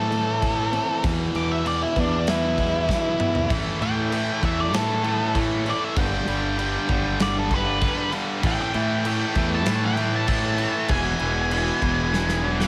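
An octave-fuzz lead guitar carries a dark, distorted solo across this angsty, cathartic alternative rock excerpt at 97 BPM, riding over a fuzzy, up-front fingered bass, a high-gain distorted guitar riff and a big-room drum kit with a punchy kick and rolled-off top. A boxy parlour steel-string acoustic, fingerpicked with audible finger squeak, opens the passage with arpeggios until 3.5 s, where a drum fill hands over to a tight distorted guitar that enters with a bright riff in the background. Chords move from Am and E to A5, G, A5 and back to E, all in a moderate studio reverb, with slapback echo on the lead and acoustic guitars and a second drum fill closing at 12.1 s.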